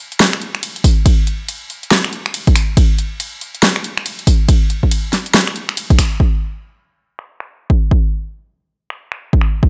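Dubstep excerpt at 140 BPM in a swung, half-time 4/4 with a dark, meditative mood, where a drop runs through the opening 6.2 seconds and hits a band accent at 6.0 before shifting into a new section, as an up-front deep house drum kit of finger snaps, hi-hat, ride cymbal and a fat snare, all low-pass filtered, enters at 0.1 seconds and a punchy, layered electronic kick joins at 0.8 seconds, set in light reverb.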